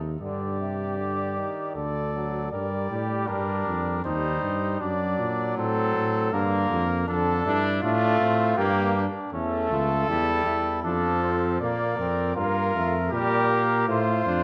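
This classical canzona for brass ensemble, written in an imitative style, moves at a stately, joyful 79 BPM in 3/4 time and sits in G minor. A dark bass trombone with light vibrato and a smooth top starts the passage at 0.0 seconds and stays up front, carrying the bass line. The other three voices enter together at 0.2 seconds: a mellow trumpet carries the melody, a clear flugelhorn with light vibrato and a vintage color sings the second line, and a brilliant trombone, set distant and roomy, fills in the accompaniment. The harmony opens on a suspended chord over G and passes through G minor, C minor and A major before it settles toward B-flat and closes on F. A recital hall reverb with a 1.4-second decay wraps the ensemble in ringing space. The recording is cut from a longer piece.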